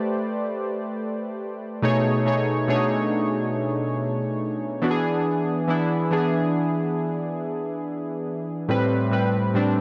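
A lone analog keyboard opens this moody, sensual R&B fragment, its round, airy tone carrying a vintage warble from a chorus effect. Set at a slow 70 BPM in 4/4 with a light swing on the sixteenths, the keys span from A2 up to D5 and sit up front in the mix. The sawtooth sound is bright with a fast attack and a decaying tail, and a noise layer and a filter sweep give it an aged, textured edge. The harmony moves from Am9 to B13 at 1.8 seconds and to E7 at 4.8 seconds before returning to Am9 at the close. A moderate booth ambience and the grain of a home cassette recording frame the keys in an intimate space, and the passage feels cut from a longer piece.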